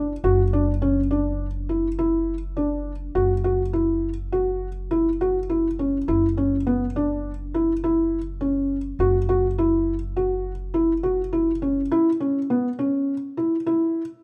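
A soft, felt-muted upright piano plays intimate, mellow arpeggios up front over a woody, dark pizzicato upright bass that stays on a low F#1 until 11.9 seconds, in this pensive yet urgent contemporary chamber fragment at 103 BPM in 5/4, heard through close, detailed microphones in a moderate recital hall reverb and cut from a longer piece.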